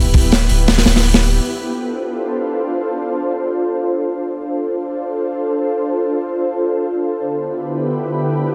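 Dark and atmospheric, this drum and bass and jungle excerpt in free time and D dorian opens with a drop where a crunchy, gritty breakbeat kit with tight kick, medium-tuned snare and hi-hat and a deep, round dub sub bass with tube saturation hit up front for just over a second under an ethereal, airy pad of detuned sawtooth chords with ensemble chorus, which then carries on alone from 1.4 seconds through a filter sweep as the harmony moves from Em/D to Dm7 and back to Em/D at 7.2 seconds, all set in moderate plate reverb and a dense, heavily limited master.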